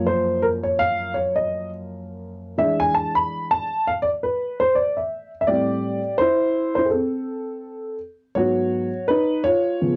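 A home cassette recording in a booth with moderate ambience gives this short excerpt a vintage, intimate grain, with a dark upright piano sitting up front and its woody action noise clearly audible. The piano plays alone throughout this smoky, mellow hip hop passage at 83 BPM in 4/4, with a 59% swing on the sixteenths and a slightly detuned tone spanning F#2 to B5. Its chords move from F#maj7 to E7, then shift at 5.5 seconds to Am7 and G#m7.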